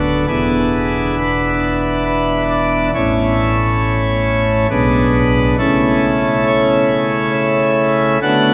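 A slow, rubato triple metre carries this brief classical chorale-style excerpt for solo pipe organ, its full, brilliant plenum with mixtures and baroque voicing sitting up front as it moves from E7 to A, G#dim/B and A/C# across a range from D1 to F#5, majestic yet serene within a wet cathedral reverb that lingers for 5.5 seconds.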